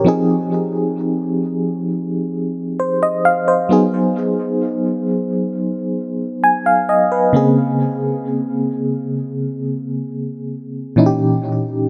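In a straight, unhurried 4/4, this moody, longing R&B fragment, cut from a longer piece, features a solo FM electric piano with tremolo, its mellow, fast-attack tone carrying a noise layer and decaying sustain, sitting up front with tape echo inside a lush hall reverb as it moves from Ab6 through B6 and Bbm9 to Eb7b9/Bb by 11.0 seconds.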